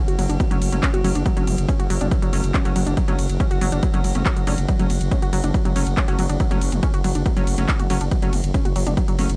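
Driving peak-time techno with a hypnotic pull, cut from a longer piece and resting on a single minor chord. A growling, thick FM bass sits low and sustained with sidechain pumping, under a punchy, layered electronic kick that enters at 0.4 seconds. The techno drum kit adds handclaps, smooth hi-hats, ride cymbal and toms, with pumping on the hats, toms and cymbals, and both kit and kick carry the sound of being re-recorded in a small room. A warbling, dusty pluck carries the riff with lo-fi, detuned triangle and sawtooth tones, a noise layer and a filter sweep, treated with chorus, overdrive, analog delay and pumping. A crisp, bright wavetable chord stab joins at 0.5 seconds with a decaying filter pluck, pumping and its own analog delay, while in the background an eerie, metallic inharmonic FM drone hangs with a moving notch, chorus, built-in reverb and pumping. The recording has a dry, gritty hardware character set in digital ambience.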